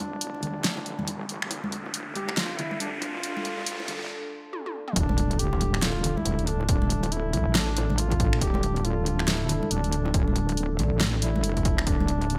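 Opening on a mellow, folk-style duduk melody with dub echo over a detuned sawtooth wobble bass and an overdriven deep house kit of finger snaps, hi-hat, fat snare and toms in gated reverb, this dark, heavy deep dubstep excerpt in D minor at 139 BPM with a swung half-time feel builds as a moody analog pad with chorus passes through a filter sweep, bongos and congas sit in the background, and a riser leads to a break at 4.1 seconds and a drum fill before the drop at 5.0 seconds, where a punchy electronic kick enters together with an impact, set in bright 1980s-style digital production with light reverb.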